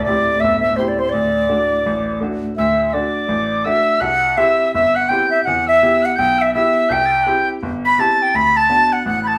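Lively and bright, this short Celtic folk hornpipe cut from a longer piece swings along at 166 BPM in D mixolydian, with an up-front, airy wooden flute carrying the tongued, straight-toned melody while a mellow wooden whistle with chiff and vibrato sings an expressive second line above it, a brilliant, slightly worn baby grand piano with audible action noise supplies present accompaniment, and a lush, distant bowed string section holds a smooth drone until 2.6 seconds, all set in a wet studio reverb that gives the feel of a band playing live in one room.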